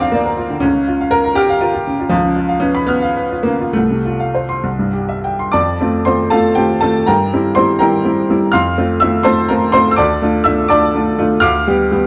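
A clear, woody upright piano, slightly detuned and placed up front with a short sustain, carries this lyrical, passionate romantic character piece alone, unfolding in 6/8 with free rubato. The harmony turns through darker chromatic colours such as Bbm/Db and Db7 before settling onto F/C and C, and a second section from 5.5 s moves through F, C7/G, Dm and G7/D. A moderate stone-room reverb and dark production frame this fragment of a longer work.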